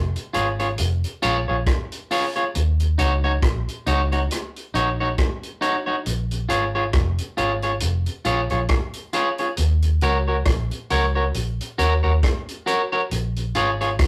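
Roots reggae at a hypnotic, meditative 68 BPM in Eb minor, this excerpt cut from a longer piece sets a dark, round, foam-muted fingered bass under a small-room drum kit of hi-hat, rim click and punchy kick with a rolled-off top, while a twangy, slightly broken-up electric guitar plays accompaniment over Bbm7 and Ebm7, all caught in a rough rehearsal-room recording with tube saturation and moderate studio reverb.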